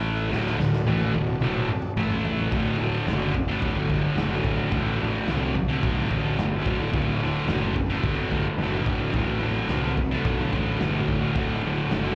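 A straight four-four pulse drives this raw, rowdy garage rock cut, taken from a longer piece, with the drum kit entering at 0.3 seconds on a fill across kick, snare and toms that runs to 2.5 seconds before the main groove settles in. Sitting in the background, the acoustic kit has a punchy kick and a medium-tuned snare, its dark, rolled-off top ringing in a bright stone room. Up front, a thick, double-tracked fuzz guitar picks a low riff through heavy distortion and slapback echo. Beneath it, a fingered electric bass growls with overdrive, punchy and direct. Very quiet in the mix, a vintage combo organ holds buzzy sustained chords with light vibrato. The whole performance sounds like a live gig caught through the venue's PA onto cassette tape, touched by light club reverb, with the harmony moving from D to A5 and back to D by 2.5 seconds.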